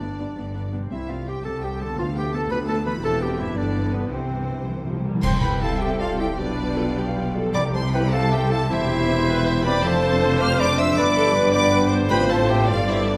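Restless and stormy, this fast romantic orchestral passage in C major moves in 6/8 at 100-115 BPM, with a lush, vibrato-rich violin section carrying the melody over a clear solo clarinet, a distant second violin line, focused viola accompaniment, ringing harp arpeggios, and bowed cellos and double basses anchoring the bass. Very quiet, close and dry timpani mark the opening and return with a fill at 4.1 seconds, while bright cymbal swells, clashes and bass drum punctuate the texture. From 5.2 seconds an airy, silvery flute joins on a second line, and from 5.6 seconds a dark, distant French horn section adds sustained chords, all set in a reverberant recital hall.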